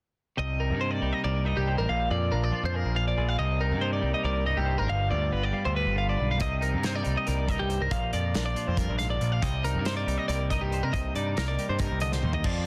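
A dense, heavily limited modern mix with light reverb frames this wistful, restless excerpt of math rock and midwest emo in C minor, running at 278 BPM in eighths through a straight 7/8 over Cm7, Bb7 and G7 chords. Two clean, twangy twelve-string electric guitars share the harmony: one sits up front playing accompaniment through spring and plate reverb, while the other spins high arpeggios through spring reverb, tape echo and plate reverb, all above a punchy, direct electric bass. A loose indie drum kit with dark cymbals, a medium-tuned snare and a tight kick enters at 6.4 seconds and plays a fill at 12.1 seconds.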